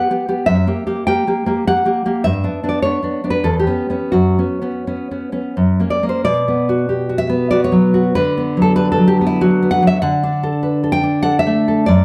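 Close, detailed microphones catch every finger squeak on the strings, set within a moderate recital hall reverb that gives the sound a gentle bloom. This brief fragment of a longer romantic piece for solo classical guitar carries a wistful, intimate mood, unfolding in a lilting triple metre with a freely breathing rubato feel. The nylon-string guitar sits up front with a deep, warm classical tone, fingerpicked across a span from E2 up to G5, and a slapback echo trails its notes. The opening passage lingers on tense, unsettled harmony, moving through F#7b9, G and C#m7b5/E before leaning on F#sus4 and resolving to F#. At 6.3 seconds a new section settles onto Bm, shifting to Bm/D at 8.2 seconds as the phrase continues to the cut at 12.0 seconds.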